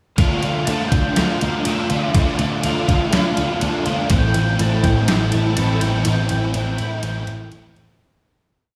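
Shoegaze and dream pop rock, brooding and melancholic, this short, complete piece is a single verse soaked in huge ambient reverb with a touch of studio ambience. Up front, a double-tracked, overdriven semi-hollow guitar strums the riff with whammy-bar dips, its hollow-body tone thickened by ensemble chorus as the harmony moves from D minor to A minor seventh. Beneath it, a vintage electric bass, picked and foam-muted, plays a round, driving eighth-note line. A detuned 8-bit drum machine with a sampler-style character and a half big groove sets a thumpy kick and a medium-tuned snare against ride cymbal, re-recorded in a small room. In the background, an octave-fuzz lead guitar carries a dark, motif-based melody in period phrases, trailed by tape echo. From 6.1 seconds the music breaks and fades out, with the lead guitar stopping at 7.5 seconds.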